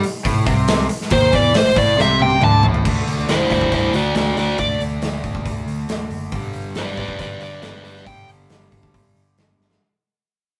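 Hard rock at 138 BPM in straight 4/4, heavy and menacing, cut from a longer piece and heard in a rough rehearsal-room recording with a moderate small-room reverb. A double-tracked, cranked stack guitar plays an overdriven riff from G2 to D4 across the whole clip, joined by a growly, punchy picked electric bass. A big acoustic rock kit sits up front with bright cymbals, a medium-tuned snare and a punchy kick, and it drops a fill from 2.0 to 2.8 seconds before the music moves from Am to D5. A smooth, dark overdriven lead guitar, also up front, solos between 1.1 and 8.3 seconds in the range E4 to A5, riding over the shift to G at 6.3 seconds. The passage fades out from 2.8 seconds to the end, with one last drum fill at 9.6 seconds.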